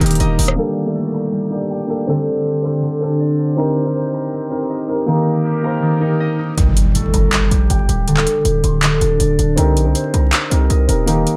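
A punchy, heavy 808-style bass anchors this menacing half-time hip hop and trap piece in G minor at 160 BPM, bursting back in at 6.6 seconds with a background electronic impact and an overdriven trap kit of metallic hi-hats, handclaps and rim clicks, while an up-front concert harp rings with fingerpicked arpeggios through a low-pass filter and tape echo over a dark, boxy grand piano and a reedy, breathing pedal harmonium, the whole recording tinted by vinyl crackle, filter sweeps and light reverb.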